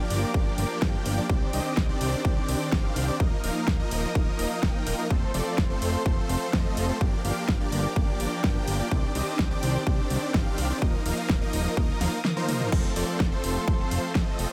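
Festival progressive house at 126 BPM, emotional and euphoric, cut from a longer piece and sitting in a drop throughout, with huge, detuned supersaw chords up front carrying a riff through digital delay over a Gm7, Cmadd9, Ebsus2 and F progression. A thick, tube-saturated analog bass with a filter sweep, a punchy, tape-warm electronic kick placed up front, and an overdriven pop drum kit with a fat snare drive the straight 4/4 pulse, while a smooth symphonic string section holds sustained chords with light vibrato in the background. Sidechain pumping runs through the strings, supersaws and bass, digital ambience surrounds the mix, and a drum fill at 12.2 s leads into a repeat of the section at 12.7 s.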